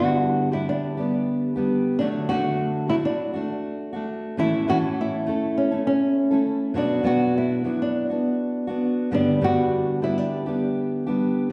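Acoustic pop with a wistful, tender mood at 101 BPM, this short section from a longer piece moves through G, D, A and B minor before returning to G. A dark, small-sounding fingerpicked nylon-string guitar carries the melody in a narrow middle range, while a full-bodied, jumbo steel-string acoustic guitar fingerpicks the accompaniment beneath it, both placed up front. The pair sits in a church or concert hall with a lush recital-hall reverb that lingers for 1.6 seconds.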